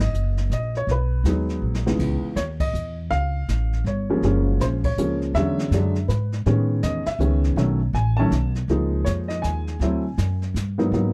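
An intimate baby grand piano carries the melody up front in this cool, swinging jazz piano trio excerpt in 3/4, its natural tone showing short sustain and audible action noise. A woody, dark upright bass, plucked on steel strings, sits just as close and anchors the low end throughout. A brushed drum kit sounds distant and roomy, with dark cymbals, a medium-tuned snare and a boomy kick, mixed well beneath the piano and bass. After a brief opening on G#m9, a drum fill at 1.6 s leads into a new section at 2.0 s, where the harmony moves through C#m9, C#, F#maj9, E13, Amaj9#11, B9, C#69 and D9 to D#. The trio hits a shared accent at 2.6 s and twice more later, all in a dry sound with little reverb.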